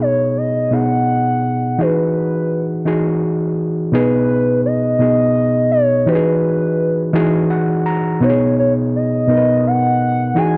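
A dark, warm-toned production with light reverb frames this sensual R&B fragment in B major, set in a slow 6/8 at 56 BPM, where a gritty, overdriven reed electric piano sits up front through a combo amp and spring reverb, cycling between B6 and Emaj9 chords and adding a fill at 7.1 seconds, while a smooth, detuned sine lead with vibrato, chorus and delay glides mellowly through the melody between B4 and G#5.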